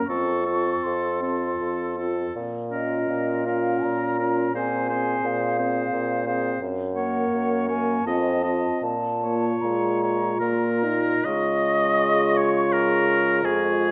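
Set in a rubato triple metre, this slow romantic movement for wind quintet unfolds with a solemn, elegiac character, a fragment lifted from a longer work. An airy, hollow concert flute carries the melody high above, its tone shaded with vibrato, while a warm oboe with light vibrato sits forward in the blend as a second line. A mellow clarinet with a vintage colour and a distant, roomy French horn supply the inner accompaniment, and a bassoon with a soft attack, placed up front, anchors the bass from 0.1 seconds. The harmony moves through minor-key shadings and a dominant seventh before settling onto a Db chord at 11.3 seconds, where a new section begins. A wet recital hall reverb surrounds the ensemble, lending the performance a spacious concert setting.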